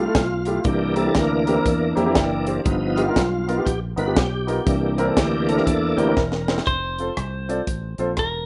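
A shouting tonewheel organ opens this soulful, hopeful slice of uptempo gospel. It takes a solo over sustained chords, lightly overdriven and turning through a slow rotary speaker with chorus vibrato and audible key click. Beneath it, a round, dark fingered electric bass holds the low end, joined almost at once by a concert grand piano with deep bass and plate reverb, and a tight funk drum kit with a high-tuned snare, tight kick, hi-hat and rim click. The swung groove moves through Fmaj9, C7, G7alt and C9, and a drum fill at 6.2 seconds closes the organ's turn. From 6.7 seconds, as the chord settles on F, a clean, picked electric guitar, compressed and scooped, carries a brief melody up front. The whole thing has the feel of a rough home demo with moderate studio reverb, dull at the very top, and it is cut from a longer piece.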